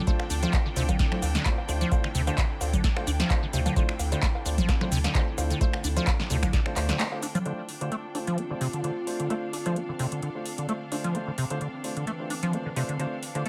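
A lightly reverberant mix opens this driving, trippy acid house excerpt, cut from a longer piece and set in D minor at 130 BPM with a gentle swing on the sixteenths, resting on a Dm7 chord. A squelchy, resonant square-wave acid bass carries the riff from start to finish, thickened by tube saturation, analog chorus and delay, with sidechain pumping. The up-front, tape-warm electronic kick and a round sine sub bass anchor the first half, the kick dropping out at 6.6 seconds and the sub at 6.9 seconds. An electro analog drum machine fills the groove with congas, cowbell, finger snaps, handclaps, shaker, metallic hats and a punchy snare, re-recorded in a large room. Behind it all, a warbling, nostalgic lo-fi pad holds sustained chords through chorus, phaser and reverb, while a distant, smooth symphonic string section adds bowed texture with light vibrato. A dark, mellow baby grand plays delayed, low-passed stabs, and after a band accent and short break at 7.0 seconds, a filter sweep runs across the piano from 7.5 seconds to the end.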